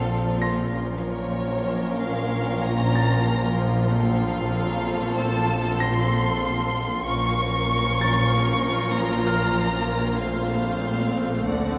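This cinematic suspense cue, cut from a longer score, moves at 95 BPM in an uneasy 5/4, its eerie mood built on a harmony that shifts between F over Bb and Bb minor. A chamber violin section carries the melody high in its range with rich, focused, vibrato-laden bowing and a smooth top, while a second violin line sits lower beneath it. In the background, violas and cellos add warm, expressive support with portamento, the cellos softly attacked, and a bright, lush double bass section anchors the low end. Underneath the strings, a sustained, resonant drone of sawtooth and sine tones unfolds with moving overtones, treated with chorus, phaser and its own reverb. A bright, brilliant grand piano adds a high, polished texture with long sustain and audible action noise until 11.5 seconds, and the whole ensemble sits in a wet scoring-stage reverb.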